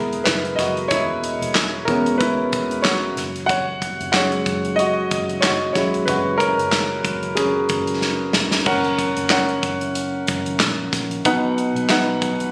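A clear, intimate grand piano opens this hopeful piano-driven pop excerpt, carrying the lead from 0.0 to 8.7 seconds over a dark, round, foam-muted electric bass and a modern studio drum kit that joins almost at once. The tempo sits at a relaxed 93 BPM in 4/4 with a gentle swing on the sixteenths, and the harmony moves from E to F# and then to B. The piano sits up front with a natural tone, long sustain and audible action noise, while the amped bass stays low and soft beneath it. The drums add a punchy kick, a medium-tuned snare, hi-hat, handclaps and bright crash cymbal in an acoustic studio room, and a drum fill from 8.0 seconds leads into a new section at 8.7 seconds. Light reverb and compression shape the sound, which was captured on a phone in the room, giving the piece a close, warm feel before it is cut off.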